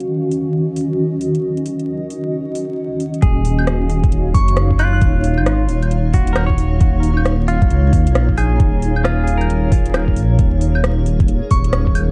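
Future garage in Eb minor at 134 BPM, this rainy, wistful excerpt swings its sixteenths and floats in an echo-heavy digital ambience dusted with vinyl crackle. A cloudy, granular pad holds sustained chords from the start, blurred by its own reverb and pumping against the sidechain, while a filter sweep moves across it in the opening 3.2 seconds over Ebm7. Beneath it, an electronic garage kit of claves, rim clicks and metallic hi-hats carries a gritty 12-bit sampler edge. At 3.2 seconds the harmony shifts to Ebm9 as a muffled, pitched-down kick thumps in and a deep, detuned saw bass rumbles up front, the bass pumping with the sidechain. A bright, twangy clean electric guitar plays picked accompaniment through analog delay, and a crystalline FM bell offers brief high melodic touches with chorus and delay, the chords settling on Bbm7/Eb near the end.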